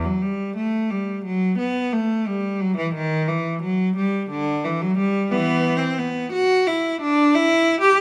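Solemn and grave, this brief cut from a longer baroque-style suite movement for unaccompanied cello unfolds in G major at a rubato 88 BPM in 4/4, with a single bowed cello, clear, smooth and even with vibrato, sitting up front between D3 and G4 in a dark production with moderate stone-room reverb.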